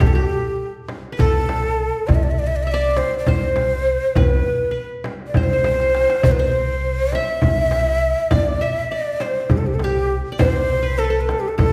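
In a straight 7/8 at 202 eighth-note beats per minute, this excerpt of a Turkish makam ensemble piece in C makam rast moves with a longing, hypnotic pull. It is led by a breathy, bright end-blown ney with vibrato and crisp attack sitting close and up front, while a plectrum-plucked qanun with triple strings traces a second line alongside it in the same register. A woody, thumpy pizzicato upright bass holds C2, and in the background a deep clay darbuka struck with hard hands and a small, dry frame drum under soft hands keep the cycle turning, with a drum fill at 5.6 s. The ensemble sits in a wet recital-hall reverb with a 1.4-second decay.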